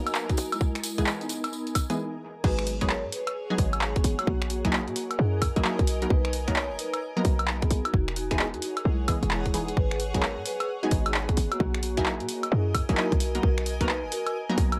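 A detuned sawtooth chord stab with chorus, phaser and dub echo leads this bouncy, sunny two-step garage excerpt, its filter sweep building until a brief stop at 2.0 seconds and the drop at 2.4 seconds. From the opening moments onward, a tight, up-front 808-style bass, a layered electronic kick, a tape-warm analog drum machine with snaps, claps, hi-hat, woodblock and crash, mellow soft-mallet vibraphone ringing through dub echo and a blurred, pumping granular pad carry the swung groove under light reverb, while a jingly tambourine plays only through the opening build-up.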